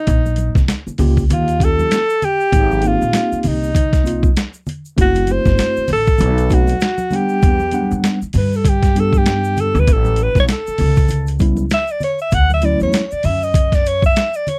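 A breathy alto saxophone opens this mellow, cool jazz-hop cut at 0.0 seconds, soloing up front with light vibrato and a soft attack over gritty, pitched-down boom bap drums with a thumpy kick and a medium-tuned snare. A woody, growly pizzicato upright bass anchors the swung groove, while a clean tine electric piano heard through its built-in speakers accompanies from 1.0 to 13.0 seconds and a bright egg shaker and congas sit in the background. The dry, close 1970s-style studio sound moves through jazzy chords like G#maj9, B7b9 and Dmaj7 before the piece is cut off at 14.6 seconds.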